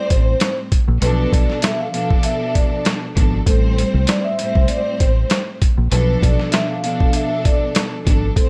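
Boom-bap hip-hop with a dark, gritty mood, cut from a longer piece, built over a brooding alternation of Am7 and Bm7b5 chords. A sampler-style drum kit sits up front with a thumpy kick, a medium-tuned snare, rim clicks and hi-hat, its sound compressed, pitched down and tape-warm, as if re-recorded in a small room. A deep dub fingered electric bass, round and punchy with a foam-muted tone, shares the forefront and holds to the low register. A lush bowed string section supplies smooth, even accompaniment with vibrato, filtered at both ends and captured with a close, studio sound. Over it, a vibraphone struck with soft mallets carries the melody in a mellow, metallic ring with a medium motor vibrato and a slapback echo, while a digital ambience surrounds the whole arrangement.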